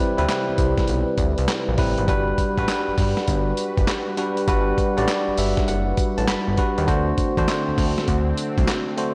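A bell-like tine electric piano and a sweeping, resonant pad open this flirty, upbeat new jack swing excerpt together, moving from Cmaj7 to Gmaj7 and later to D7. The piano sits bright, clean and up front with a slapback echo, while the evolving, full-bodied pad hangs in the background, its detuned sawtooth and sub-octave layers entering with a slow attack and a filter swell under a chorus sheen. At 0.2 seconds a fat analog bass arrives, thick and sawtooth-edged with a fast attack, a filter pluck and a moving notch. Alongside it comes a dusty, sampler-style soul kit of thumpy kick, medium-tuned snare, hi-hat, handclaps and tambourine, compressed, gritty and placed up front with a swung sixteenth-note lilt. From 5.1 seconds the electric piano steps out with a short fill, and a lush hall reverb gives the whole cut a big arena sound.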